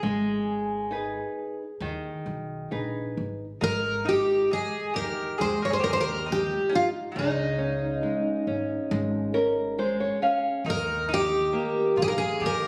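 Captured on a phone in a recital hall with moderate reverb, this short cut from a longer fado-style ballad unfolds in a loose, rubato pulse with a longing, mournful air. Up front, a picked twelve-string acoustic guitar carries the melody with a shimmering, octave-doubled, full-bodied tone and audible finger squeak, while a dark, fingerpicked nylon-string guitar, also up front, accompanies and adds a fill at 8.9 seconds over a woody pizzicato upright bass. At 3.6 seconds a round-toned mandolin with double strings enters on a second line as the piece moves into its next section.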